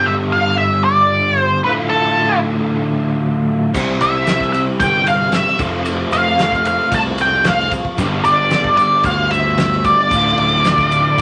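Psychedelic rock in D dorian at 113 BPM, mysterious and trippy, where a dark, up-front octave-fuzz lead guitar with wah carries the melody over a bright, double-tracked crunchy guitar riff through a rotary speaker and faint, reedy organ chords with light vibrato, before a round fuzz bass, a cloth-damped thuddy drum kit with a fat snare and dark cymbals, and a grainy tube shaker in the background join at 3.7 seconds, all in a wet studio reverb.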